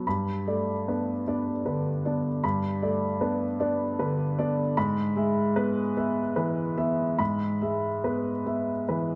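A baby grand piano plays alone, its worn, open tone up front with long sustain, moving from a Gadd9 chord to E/G# at 4.8 seconds across a range from G2 to B5. This wistful, intimate neoclassical minimalist fragment sits in 6/8 with uneven, rubato beats. A moderate concert hall reverb surrounds the playing, lending a gentle sense of space.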